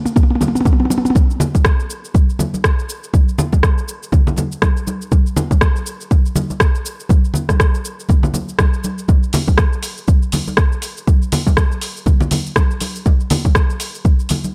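A 16th-note groove swung at 58% pushes along at 121 BPM in 4/4 in this driving house excerpt, opening with a brief drum-fill build-up before the drop lands at 1.2 seconds. A deep, tape-warm electronic kick sits up front as the loudest part, alongside a produced afro-pop kit of metallic hi-hats, rim clicks, shaker and toms, while close, dry acoustic congas ring underneath. The production is dark with little reverb, keeping the mood snug and propulsive.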